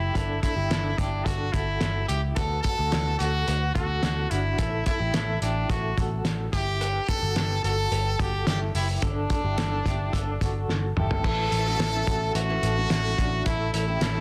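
A brilliant, punchy trumpet leads this youthful, bright stretch of jangly indie pop, carrying the melody up front with light vibrato and a forceful pop-style tone set in a roomy, distant space. Beneath it, an electric guitar through a small old amp picks twangy, slightly broken-up arpeggios, shimmering with tremolo and digital delay. A vintage muted picked electric bass sits up front with a round, foam-muted, dark sound, while a cloth-damped, thuddy drum kit supplies a fat snare, tight kick, toms, hi-hat and dark cymbals with a muffled, gritty, saturated, lo-fi character. The chords move from Gsus2 through D, A5 and Em/G in a straight 4/4 feel, and a drum fill at 10.7 seconds leads into a new section at 11.2 seconds. There a picked steel-string acoustic guitar joins in the background, with audible finger squeak, as the harmony lands on A. The sound has a light reverb and small-room ambience, finished with a dense, heavily limited modern master.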